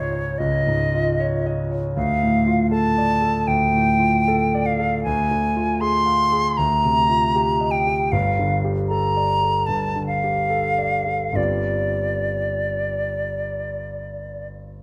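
A silver concert flute carries the melody up front, its pure, metallic tone shaped by gentle vibrato and soft attacks as it sings in the upper register from the opening until about 14.5 seconds. This is an impressionist classical duo with a wistful, hazy mood, moving at roughly 77 BPM in 4/4 with uneven, rubato beats that let the phrases breathe freely. Beneath it, a concert grand piano supplies the accompaniment, also up front, with a warm, intimate, vintage character, smooth voicing, deep bass and the audible noise of its action. The harmony drifts through soft colours, starting on Dbadd9 and passing through Dm, Fm6/D and Gm9 before settling on an unresolved G7sus4 near 11.4 seconds. A moderate recital hall reverb surrounds the pair, and this short fragment from a longer piece ends with the piano's last sound at 14.8 seconds.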